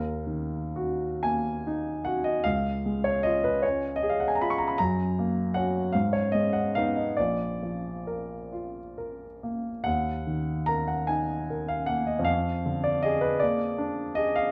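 A grand piano, up front and warm, plays this wistful, yearning romantic nocturne alone, moving in a rubato 6/8 at roughly 40-54 BPM in Eb minor and ranging from Bb1 up to Db6. Its harmony drifts from Ebm through Db, Gb and Abm to Bb before returning to Ebm at 9.9 s and settling on Bb7/F at 12.3 s. A moderate recital hall reverb and a dark production frame this 14.5-second passage, cut from a longer piece.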